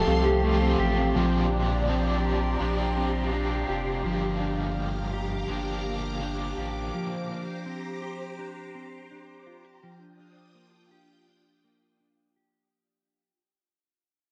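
Dream pop at 83 BPM in Bb major, this dreamy, floating fragment of a longer piece moves through chords like Bb69, Gm7 and Ebmaj9 while a long fade-out runs from 1.2 seconds onward. A deep, thick saturated sub bass sits up front until 6.9 seconds, and a bright, crunchy overdriven guitar with tremolo and subtle chorus picks out accompaniment until 7.4 seconds. Meanwhile, a swirling vintage string machine holds sustained chords through ensemble chorus and phaser, and a dark, clean, fingered electric guitar spins arpeggios through lush chorus and tape echo, all softened by a moderate plate reverb and the warbly pitch drift of worn cassette tape.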